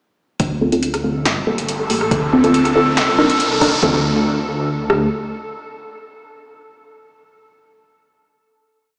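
A brooding, dark piece of deep dubstep opens at 0.4 seconds with a rumbling, detuned sawtooth bass holding long notes in D minor, alongside a layered, overdriven deep house drum kit playing a half-time beat at 140 BPM with a deep kick, rim clicks, a punchy snare and metallic hats. Filtered dub chord stabs arrive on the off-beats in muted, rootless voicings, colored by phaser, analog chorus and dub echo. A filter sweep on these stabs drives a short build through Dm7, Gmadd9 and Cm7, as an electronic riser and a reversed, swelling granular texture holding a bright high note join the climb. The build resolves at 3.8 seconds onto a final Dm7 chord, and the stabs ring on until 8.5 seconds. The whole piece sits in a huge, wet ambient reverb with a stony character, as though played through a big sound system in a bare room.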